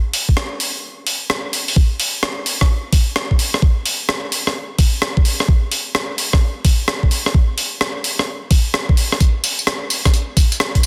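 Soulful and late-night, this UK garage excerpt swings its sixteenths as a gritty, compressed breakbeat kit of hi-hat, rim click and tambourine, with soft clipping on the snare, rides over an up-front, knocking electronic kick, pausing for a brief break between 0.8 and 1.8 seconds, all set in light reverb under a dense, heavily limited modern master.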